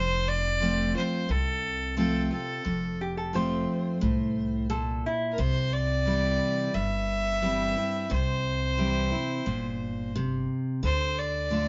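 A clear, bowed fiddle with light vibrato carries the earthy melody up front from the start, over a bright, full-bodied picked dreadnought acoustic guitar and a woody, warm pizzicato upright bass in this sunny, nostalgic excerpt of honky-tonk and classic country in a straight 4/4. Between 3.0 and 5.4 seconds, over an F chord, a lap resonator guitar played with fingerpicks and slide adds a metallic, nasal second line, after which the harmony moves to C and then to Dm. The band sounds as if playing live together in a stone room with moderate reverb, and the top end is rolled off above 7.5 kHz.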